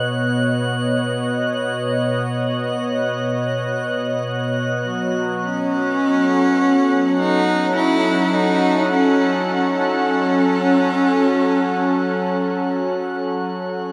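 A detuned sawtooth pad opens this spacious, melancholic ambient excerpt, sitting up front with smooth, sustained Badd9 chords thickened by chorus, while a glassy sine texture with drifting overtones hovers high above it, calm and softened by its own reverb. The piece moves in free time in F# dorian, tuned to A4 = 436 Hz. At 4.8 seconds the harmony shifts to F#m as a hand-pumped harmonium slips in underneath, its reedy, nasal, breathing drone held in the background. A clear, focused solo cello enters at 5.4 seconds, bowed close and up front with vibrato, carrying a narrow melody through a diffuse ambient delay. A huge, wet reverb with a long 7.8-second decay bathes the mix before a fade-out begins at 11.1 seconds.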